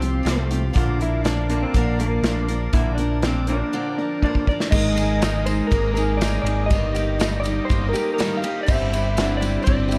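A straight 4/4 pulse at 121 BPM drives this hopeful folk and heartland rock excerpt, where a dark, slightly broken-up electric slide guitar with analog delay carries the melody over full-bodied picked acoustic guitar, a lo-fi electric guitar riff, growly up-front picked bass, a punchy, airy country drum kit, and a shimmering, reedy musette accordion, until a drum fill at 4.2 seconds ushers in a very quiet, intimate grand piano and a jingly tambourine at 4.7 seconds, all under studio reverb in a dark, warm production.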